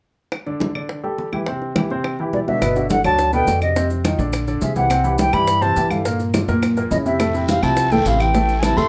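A lively, danceable Afro-Cuban jazz groove at 209 BPM in straight 4/4 opens with bright, damped congas, round low-tuned bongos and woody claves, joined at 0.5 s by an intimate, up-front grand piano with audible action noise and deep bass. At 2.3 s a pure, crisp-attacked flute takes the melody over a dark, breathy trombone second line with light vibrato. Soon after, a thumpy pizzicato upright bass and grainy, band-limited maracas come in, and a raspy, distant guiro arrives at 7.2 s, all within a moderate club reverb as the short cut moves through chords such as Gmaj9, Bb9 and F#7.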